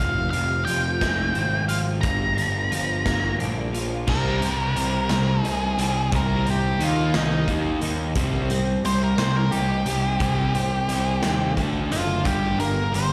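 Angsty and cathartic, this quiet-loud alternative rock excerpt moves in a slow 6/8 at 59 BPM in C minor, with a dark, distorted octave-fuzz lead guitar carrying the melody up front from the start over a clean, compressed twelve-string electric guitar playing arpeggios through ensemble chorus and slapback echo in the background, a bright, growly overdriven bass, and a raw garage drum kit with a punchy kick and gritty, pumping stone-room sound entering at 0.3 seconds. At 4.1 seconds a double-tracked fuzz guitar riff with slapback echo joins as the lead guitar launches into a solo, the harmony shifting from Fm and Gm7 to Cm, Eb5 and D5 before landing on Gm. It all sounds like a live gig heard through the venue's PA, soaked in club reverb.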